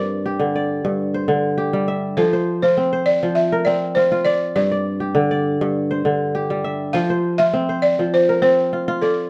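In a straight, steady four-beat pulse, this warm, hypnotic West African traditional piece, cut from a longer performance, pairs a woody, buzzing balafon struck with rubber mallets, which carries the melody up front, with a crisp, ringing, fingerpicked acoustic kora spinning arpeggios beside it. The two play together for about 9 seconds over a cycle that moves from G minor to F and G power chords. The band plays live in one room, and a moderate stone-room reverb gives the performance a sense of shared space while the balafon stays dry and close.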